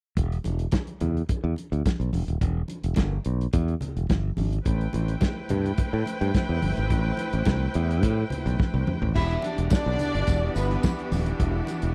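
A growly, punchy fingered electric bass drives this sultry, danceable disco excerpt, sitting up front beside a dry, muffled soul drum kit with dark cymbals and a tight kick, while hard-hand congas sit in the background from a large room. Bright, intense bowed strings enter with sustained chords at 4.7 seconds, and after a drum fill a clear, focused second string line joins at 9.2 seconds, shortly followed by a jingly, compressed tambourine. The whole has the close, dry sound of a 1970s studio recording.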